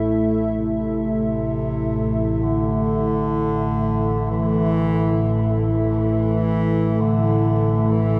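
A close-miked bass clarinet, clear and up front, carries a solo melody in a classical style, entering at 0.6 seconds and sounding through to the end of this brief fragment of a longer piece. Around it, a dark analog pad holds sustained chords from the start, its deep, moody tone built from detuned square and sawtooth waves with a sub octave, ring modulation and chorus. An organ-like drone anchors the low register in unison, its calm, detuned sine and triangle tones shaded by ring modulation, a moving notch, ensemble chorus and built-in reverb. The clarinet's line is echoed by delay, and the whole mix is soaked in a huge ambient reverb with a 7.6-second decay, giving a dreamy yet unsettling atmosphere. In free time and A minor, the music feels dark and suspended, with chords built on an A5 from the opening moment.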